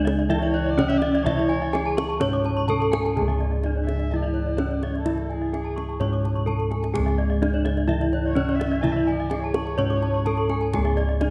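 A straight 4/4 pulse at 127 BPM drives this hypnotic, brilliant stretch of Balinese gamelan in C# pelog, with round bossed gongs up front carrying the bass and a tight kendang sitting in the background, its drum fill landing at 6.4 seconds. Bright bronze metallophones with paired tuning spin the melody and a high arpeggio line with shimmering beats, while a full, dry metallophone rings out the low accompaniment and another, airy one adds a second arpeggio from 0.2 seconds. A single bowed erhu threads a dark, woody second line with vibrato and portamento, and the ensemble sits in a moderate concert hall reverb.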